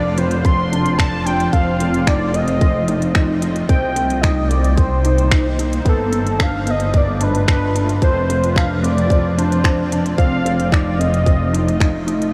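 A velvety synth lead with chorus and tape echo sings over a blurred, pumping granular pad, a felt-muted upright piano riff and a veiled, bowed chamber double bass section, while finger snaps, crisp hats and a tight, up-front electronic kick drive this hypnotic, cinematic piano and strings electronica at 111 BPM through a dreamy, reverb-soaked mix, with a very quiet electronic swell appearing at 2.9 seconds.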